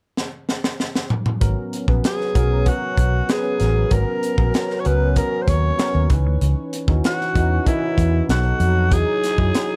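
A lightly reverberant, polished mix opens this slick, bittersweet slice of 1980s jazz-funk pop at 96 BPM in G# minor, with a crisp fusion drum kit, punchy and up front with a high-tuned snare and a pumping room sound, playing a fill from 0.2 seconds. At 1.4 seconds a dark, round, foam-muted fingered electric bass and a bright, barky tine electric piano, lightly overdriven with analog chorus through a combo amp, settle onto a G#m11 chord before moving through C#m9, B7 and Emaj9. From 2.1 seconds a growling alto saxophone solos up front in jazz style, raspy and gritty with subtone, vibrato, scooped notes and a smooth top.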